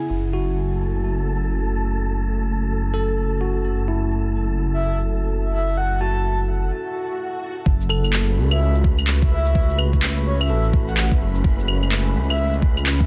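A bell-like tine electric piano with tape echo and a warbling, lo-fi pad under a filter sweep open this melancholic, ghostly future garage excerpt in F# minor at 127 BPM with a swung 16th feel, joined by a menacing, detuned saw bass up front and an airy, wind-like noise texture, before a breathy flute-like synth lead with lush chorus and vibrato enters at 4.7 seconds, an electronic swell fills a short break at 6.8 seconds, and from 7.7 seconds an overdriven, knocking kick with layered shaker, claves and handclaps drives the dense, heavily limited mix, as the piano, pad and bass pump against the sidechain.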